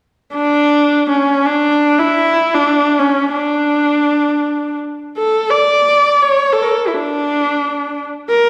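A single bowed viola leads this short fragment of Balkan folk music, entering at 0.3 seconds and playing through to 8.5 seconds. Its tone is warm and focused, with a slightly boxy body and vibrato, and it sits up front as one player carrying the whole line. The music moves in free time, giving the phrase a restless, fiery character as it ranges from C#4 up to D5, tuned to A4 = 442 Hz. A wet recital hall reverb with a decay of about 1.5 seconds surrounds the instrument, and the listener seems to be placed further back in the room. The passage is cut from a longer piece.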